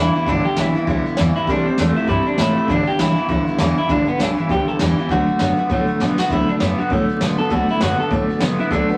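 Vinyl crackle and a moderate studio reverb give this short rockabilly excerpt a retro, lived-in sheen, and the mood is rollicking throughout. At a brisk 199 BPM in 4/4 with a swung eighth-note feel in G major, the harmony moves from G6 to C6, back to G6 and then to D6. Two twangy electric guitars run through a small old amp sit up front with a bright, slightly broken-up bite: one carries the melody while the other plays a low riff colored by tremolo. A picked steel-string dreadnought acoustic adds full-bodied picked support beneath them, and a pizzicato upright bass with gut strings supplies a woody, thumpy bottom end. A jazz brush kit with a boomy kick and medium-tuned snare enters at 0.3 seconds, sounding airy and polished in a small room, and it marks a brief drum fill at 6.0 seconds.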